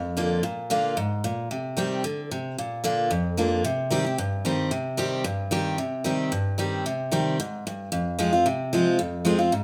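A picked steel-string acoustic guitar plays alone from the first moment, its bright, full-bodied dreadnought tone sitting up front in a moderate large-studio reverb. This short bluegrass excerpt in C minor moves at a brisk 224 BPM in a straight 4/4, with a lonesome, haunting mood. The chords shift between Bb and Cm before settling on Fm at 7.9 seconds, with the guitar ranging from F2 to G4.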